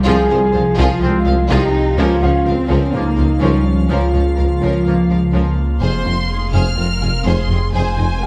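A lush orchestral body meets a deep, rumbling synth low end in this tense, futuristic excerpt from a hybrid orchestral and electronic film score, set in F minor at 125 BPM in a straight 4/4 under light reverb. Two violin sections carry the strings: one sings the melody with expressive vibrato and a smooth top, while the other plays a second line in the background, joined by a bright, intense viola section on accompaniment and a rich cello section on bass. A detuned sawtooth bass sits up front with a beating, rumbling tone, sharing the same low register with a symphonic double bass section and a very quiet tuba, while a calm, organ-like drone with ensemble chorus, built-in reverb and phaser holds sustained chords throughout. A mellow, distant French horn section and a clear, vintage-toned trombone section add tight sustained chords, with the trombones dropping out at 5.0 seconds and the horns at 5.6 seconds. 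A warm, very quiet baby grand piano adds faint texture up high as the harmony moves from Fm/C to Bbm/Db, then shifts at 5.8 seconds into a new section on Fm before closing on Ab/F.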